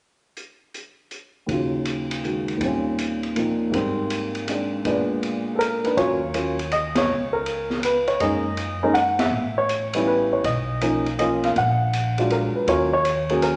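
Jazz piano trio in a cool, late-night mood, swinging in 3/4 at 161 BPM in Eb minor: this fragment opens with a smooth, small-room drum kit of dark ride and hi-hat, a high-tuned snare and a boomy kick, before a mellow, woody upright piano steps up front with the melody at 1.5 seconds over rich extended harmony, and at 6.0 seconds a growly pizzicato upright bass with steel strings joins, all set in a wet, large studio reverb with a rolled-off top.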